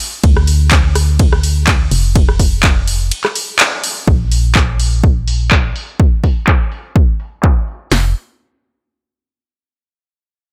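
Piano house at 125 BPM in 4/4, this joyful, euphoric fragment of a longer track rides a gentle 16th-note swing. Two up-front analog drum machines carry the beat: one supplies a punchy kick, snare and hi-hat, while the other adds handclaps, hi-hat, ride cymbal and rim clicks, its hats, cymbals and snare softened by a low-pass filter. Beneath them, an organ-like FM bass with a hollow, dark tone and fast, decaying attack moves between F1 and D2, pumping with sidechain compression. The opening drop gives way to a short break from 3.1 s, punctuated by a band accent at 3.6 s, before a filter sweep on the drums shapes the next passage starting at 4.1 s. A digital ambience surrounds the tape-warm drums and the bass.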